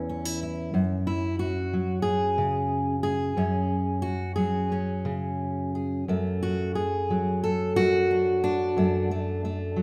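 A full-bodied steel-string dreadnought sits up front in a wet recital-hall reverb with a 1.5-second tail, in this short folk excerpt for solo fingerpicked acoustic guitar. Tuned to A4 = 439 Hz, the guitar moves in a loose, rubato 4/4 around 90 BPM across a range from E2 to A4. It drifts from a rootless A into F#sus2 at 0.7 seconds and settles on D/F# at 6.1 seconds, giving the 9.8 seconds a nostalgic, pastoral mood.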